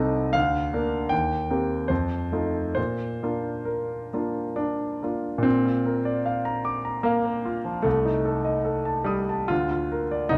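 Set in a triple metre, the pulse stretches and yields freely in rubato, giving the music the intimate, speaking quality of a romantic character piece for solo piano. The mood is passionate yet bittersweet, moving through a short cadential turn from Bb/D through Cm7/Eb and F7 to a settled Bb within the first three seconds. At 5.4 s a second section opens, colored later by a darker Adim/C before returning to Bb/D at 9.5 s. The concert grand sounds warm and vintage, with a deep bass, a smooth tone and a close, up-front presence, ranging from the low C2 register up to Eb6. A moderate large-studio reverb surrounds the instrument, and this brief passage is cut from a longer piece.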